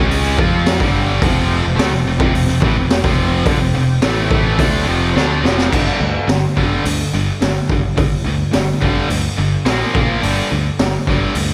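A raw garage drum kit sits up front in this powerful, anthemic hard rock excerpt, its boomy kick, high-tuned snare, hi-hat and crash sounding saturated and gritty with a rolled-off top, and a fill at 5.2 seconds leads into a new section at 5.7 seconds. Two picked electric guitars drive the riff over G5, F5 and Bb5 power chords: a scooped, high-gain one with bright distortion and an overdriven stack guitar set further back, while a growly, punchy bass plays beneath them. A very quiet, thick overdriven tonewheel organ holds sustained chords with key click and slow rotary speaker until 5.7 seconds, and the whole mix opens into a big arena sound with concert hall reverb.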